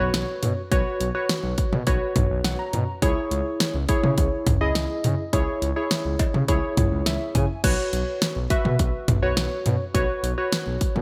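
A bright, 1980s-style digital production sits in a moderate plate reverb, framing this wistful synth-pop excerpt cut from a longer piece at 104 BPM in a straight 4/4. Up front, warm analog keys in a detuned square-and-sawtooth blend carry the accompaniment with a chorus effect and a filter sweep, their round, mellow tone decaying after each fast attack, and they add short fills from 2.2 to 3.0 s and again from 6.8 to 7.6 s. Underneath, a smooth gliding synth bass of sawtooth and triangle waves, wave-folded, holds sustained notes shaded with vibrato and portamento. A layered electronic pop drum kit enters at 0.1 s, also up front, with a punchy kick, fat snare and warm hi-hat alongside cowbell, crash cymbal and toms, re-recorded in a small room. The harmony moves from Bsus2 to C#m and returns to Bsus2 at 7.6 s as the opening section begins again.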